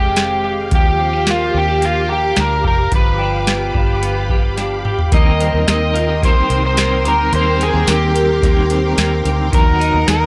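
An overdriven slide guitar carries the melody through tape echo over warbling string-machine violas, a clean semi-hollow guitar picking arpeggios and a round, foam-muted bass, while a booming analog drum machine with a deep kick and metallic hats sits up front, a very quiet, bell-like glockenspiel rings from 2.1 to 8.4 seconds, and a twangy, slightly broken-up guitar with tremolo joins at 5.1 seconds after a drum fill in this floating, ethereal dream pop excerpt with a dry, gritty sound.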